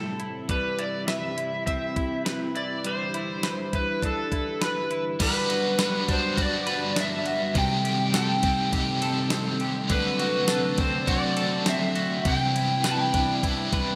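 A string machine voicing cellos opens with dark, sawtooth-edged sustained chords swimming in ensemble chorus, alongside an electric guitar at the edge of break-up playing twangy fingered arpeggios through analog chorus and digital delay. This short dream pop excerpt moves at 102 BPM in a straight 4/4 in G major, its mood dreamy and floating. A crisp 8-bit drum machine comes in almost at once, with a thumpy kick, fat snare, hi-hat, ride, crash and tambourine, all under gated reverb and re-recorded in a large room. From 0.5 seconds an overdriven slide guitar carries the melody, bright and up front with subtle chorus and digital delay. At 5.2 seconds a biting overdriven guitar joins as accompaniment, picked and shimmering with tremolo and lush chorus, as the harmony passes through Gmaj7, Cm6, D7 and Cmaj9. The whole mix sits in a wet, lush hall reverb with bright 1980s-style digital production.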